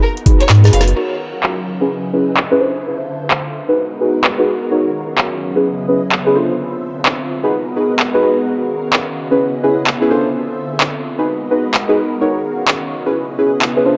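Soaked in echo and a moderate spring reverb, this short cut from a longer UK garage track has a hazy, dubby sound. It is a bouncy, skippy two-step groove at 128 BPM with a 62% swing on the 16th notes. Up front, the layered electronic drum kit pairs a woody snare with metallic hats, finger snaps, handclaps and a crash, all dulled by a low-pass filter and re-recorded in a small room. A deep, mellow, wave-folded chord stab with chorus and dub echo carries the dark minor-seventh changes, and a round, soft sub bass surfaces only briefly near the start. A lush, vibrato-rich violin section drifts in the background for the first 0.8 seconds. Beneath it all, a silky vintage string machine holds phased, pumping chords, joined at 1.4 seconds by a warbling, detuned, nostalgic tape-like pad.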